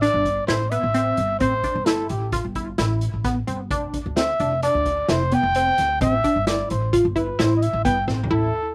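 A driving 5/4 pulse at 130 BPM carries this brooding progressive instrumental in A minor, where a dark, breathy trumpet solos up front with light vibrato and slapback echo over tight sequenced synth arpeggios of detuned sawtooth and square waves with a filter pluck, chorus, phaser and slapback echo, a woody, thumpy pizzicato upright bass, and a vintage drum kit with a boomy kick and rolled-off top in a pumping small room, all in a dry mix with a drum fill at 8.1 seconds in this short cut from a longer piece.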